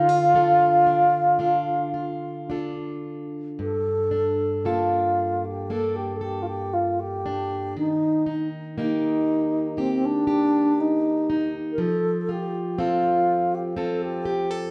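Rubato and unhurried in 4/4, this mournful, longing Celtic slow air, cut from a longer piece, sets a pure, expressive wooden-headed alto flute up front, its tongued notes shaded with vibrato, over a quieter, boxy parlour steel-string acoustic guitar with fresh strings picking an accompaniment through Dm, Gmadd9, Eb and F, both parts sounding throughout in a moderate recital hall reverb and a dark production.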